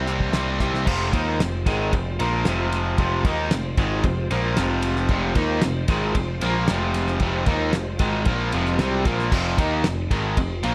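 An excerpt of gritty, driving classic rock opens on a C7 chord: a very quiet, reedy tonewheel organ holds sustained chords through a slow rotary speaker, a crunchy overdriven guitar riffs up front, a second overdriven guitar sits briefly behind it, and a punchy picked electric bass anchors the low end. A dry, cloth-damped drum kit with dark cymbals, a fat snare and a tight kick pushes the groove, and at 0.9 s the harmony settles onto Fm as a raw, double-tracked garage guitar joins in the background. The second background guitar returns at 5.1 s, the organ drops out at 9.3 s, and light reverb lends the whole a little space.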